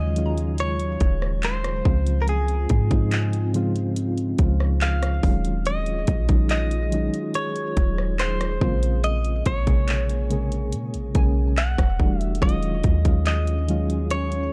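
A deep, boomy 808-style bass sits up front beside a trap drum kit with a hard-clipped kick, bright hats, handclaps and rim clicks that enters at 0.2 s, setting a moody, longing tone for this contemporary R&B piece in a slow, straight 4/4. A twangy, compressed clean electric guitar carries the melody through tape echo over soft, round electric-piano-like synth keys with chorus and tremolo, while an ethereal FM pad with phaser and ensemble chorus holds sustained chords in the background. A crystalline wavetable pluck adds faint texture from 0.0 to 1.3 s and again at 11.2 s, all within a dark, dry production.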